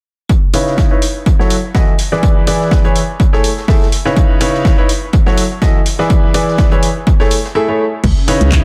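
An echo-heavy, reverberant mix opens this bittersweet, soulful piano house excerpt at 124 BPM in C# minor with a lightly swung 16th feel, where a punchy, overdriven electronic kick sits up front beside garage-kit claps, crash and hats, while a dark, smooth jazz kit's hi-hat and snare murmur in the background; a brilliant baby grand piano riff runs through C#m9, F#m7, E7 and Amaj7 chords under a filter sweep from 0.3 to 8.0 seconds, and at 8.0 seconds a hollow, organ-like FM bass and a breathy, chorused pad join in.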